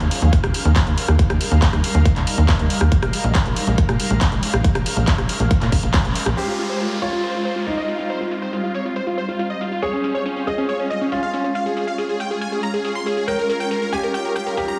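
Huge, lush supersaw chords with phaser, delay and a filter sweep burst in at 6.4 seconds over a soaring, emotional uplifting trance passage in F minor at 139 BPM, joined by a delayed concert grand piano, a faint detuned unison pluck and a brief electronic downlifter. This follows an opening where a tight, nasal sequencer bass pumps beneath a punchy layered kick, the kick dropping out at about 6.0 seconds and the bass just after, while an analog drum machine's filtered handclaps, hi-hat, rim click and shaker carry on throughout, all under a heavily compressed, radio-like sound in a small room.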